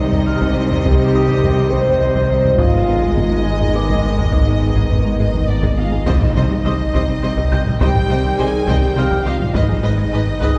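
Set in a straight 6/8 at 69 BPM counted in dotted quarters, this cinematic hybrid film-score cue in C harmonic minor feels tense and vast, moving between C minor and A-flat minor chords. Two violin lines carry the top with lush, vibrato-rich bowing, one holding an Eb5 melody while the other moves between C5 and Ab5 over a very quiet, even viola accompaniment. A mellow French horn section and a very quiet, clear trombone section hold sustained chords, while a woody, dark cello section, a double bass section and a round sub bass anchor the low end alongside a rubbery, hollow square-wave bass riff. A glassy wavetable pluck traces crystalline, warbling arpeggios and a swarming, detuned granular drone sustains throughout, with a soft felt-muted upright piano adding delayed texture high in the background. Taiko drums struck with heavy sticks sit back in the mix from 0.1 s, and an electronic impact lands at 6.1 s as a new section begins. 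The whole ensemble is heard from further back on a wet scoring stage, and the passage is cut from a longer piece.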